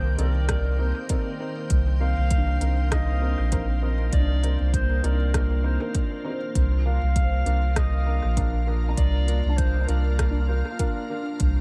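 A round, soft dub sub bass sits up front with tube saturation, anchoring this hazy, deep ambient dub piece in C dorian at 99 BPM with a light swing on the sixteenths. A dark, distant clarinet carries the melody in a classical style, its roomy tone trailed by tape echo. Beneath it, a bright, detuned, organ-like pad holds sustained chords through ensemble chorus and its own built-in reverb. Two upright pianos fill the middle: a felt-muted one plays intimate, boxy arpeggios in the background with audible action noise and tape echo, while a woody, mellow one adds short stabs thrown into dub echo. An organic electronic kit brings crisp hats and rim clicks in dub echo, re-recorded in a small room, and a layered electronic kick sits low in the background from 0.5 s. The harmony moves from Cm7 to Bb at 6.6 s in this brief section cut from a longer piece, set in small room ambience.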